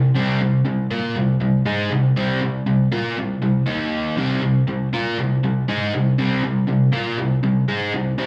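A crunchy, overdriven electric guitar opens this short, aggressive rock fragment alone, its picked, double-tracked tone sitting up front with a slapback echo. In a straight, driving 4/4, it moves from C5 to Eb5 at 3.7 seconds before settling back on C5. The sound is a live gig heard through the venue's PA, with moderate club reverb around the guitar.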